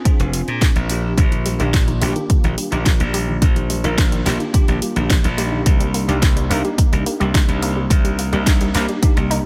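Digital ambience frames this sleek, sensual nu-disco excerpt, where an up-front overdriven electronic kick and a house kit with cracking snare and bright hats sit alongside a punchy glassy slap bass and a bell-like tine electric piano with chorus, pumping and analog delay, joined at 1.2 seconds by a round, nasal analog pluck arpeggio tucked in the background as the chords move from Bb7 through Ebmaj7/Bb to Cm7.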